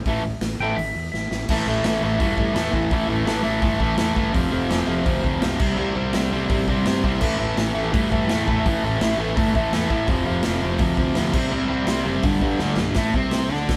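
A live-in-one-room garage rock recording with moderate reverb opens on a brief, dark, clean lap steel melody played with fingerpicks, slide and volume swells that stops at 1.5 s, while a bright, double-tracked, up-front fuzz guitar riff, a round, overdriven fingered bass and a raw, saturated drum kit with a punchy kick drive a gritty, swaggering A minor groove at 167 BPM in straight 4/4, with drum fills at 1.1 s and 12.6 s over chords moving from A5 through F5 and C5 to a closing G and Am in this excerpt cut from a longer piece.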